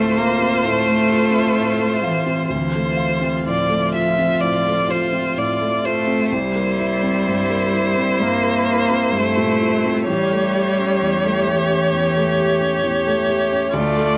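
Rubato in four, this fragile, longing neoclassical fragment for piano and strings sets an up-front, focused solo violin melody with vibrato over a smooth, distant cello second line, a far-off viola filling in the accompaniment and a soft, felt-muted upright piano whose intimate, mellow tone carries audible action noise, heard in a small room with light reverb as the harmony moves from Dm7 to C7 at 6.3 seconds and A7 at 10.1 seconds.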